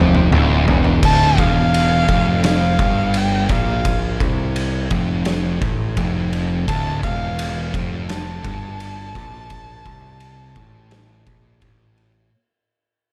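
A drum fill on an oversized, low-tuned kit opens this brooding, hypnotic stoner and doom metal excerpt at 85 BPM in D minor. Alongside the saturated, gritty drums, with their punchy kick and medium-tuned snare in a bright stone room, sit an up-front, double-tracked fuzz guitar riff and a growly, overdriven picked bass. At 1.0 seconds a single dark, woody erhu enters close by, bowed with vibrato and portamento and trailed by tape echo, as the music begins a long fade-out. The erhu stops at 11.6 seconds and the drums at 12.1, while guitar and bass continue to the cut at 12.3.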